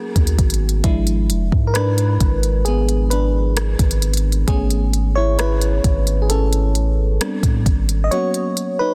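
At a slow 66 BPM in a straight 4/4, a smooth, electronic R&B drum kit sets a produced groove of soft kick, silky hi-hats and rim clicks, with the kick dropping out from 8.1 seconds. This contemporary R&B excerpt has a moody, late-night feel. A deep, sine-toned 808-style bass holds long, sustained notes with a fast attack and a mellow decay, sitting up front in the mix. Over it, a vintage FM electric piano carries the lead with a warbling tone, a noise layer and quick, decaying notes, and it runs through the whole clip. The harmony drifts from G#m11 through E7b9 and Amaj7/G# to Am11, then settles back on a rootless G#m11. The sound is dry and close, with a dense, heavily limited modern master.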